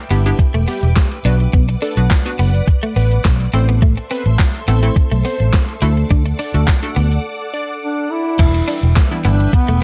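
Confident and driving, this dance-pop excerpt in E minor moves at 105 BPM over an Em7, Bm, Am and D progression, with a gated 80s drum machine pushing a thumpy kick, gated-reverb snare, handclaps, hi-hat, shaker and crash up front beside a round, foam-muted fingered bass that pumps with sidechain. A silky string machine holds warbling sustained chords and a hollow, bouncy square pluck adds detuned accompaniment, both also pumping, while a clean, compressed electric guitar plays a chorused riff. A catchy, full-bodied unison lead carries the melody through analog delay and on into a break that begins at 7.2 seconds, and at 7.8 seconds a dark, distant duduk takes over with vibrato and scooped notes, all set in a dry, gritty sound with a cassette-tape character.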